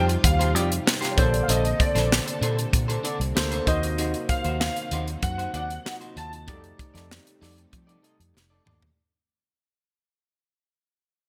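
A polished 1980s jazz-funk pop excerpt at 96 BPM in a straight 4/4, urban and breezy in mood, opens at once with a barky tine electric piano under analog chorus, a lush string machine, a slightly broken-up electric guitar riff and a round, foam-muted fingered bass. A tight funk drum kit joins almost immediately, dry and up front, with a medium-tuned snare, tight kick, hi-hat and toms. From 0.2 seconds a warm grand piano carries the melody high above the band, dressed in ensemble chorus and digital delay. The compressed, picked guitar sits in a lush chorus, while the sawtooth string machine holds very quiet, mellow, slow-attack chords with a sub-octave underneath. The harmony moves from Eb69 to Bbmaj9, then Ebm6 and F13, in a bright digital production with light small-room reverb. The whole passage plays under a fade-out, and a drum fill closes it from 8.4 seconds.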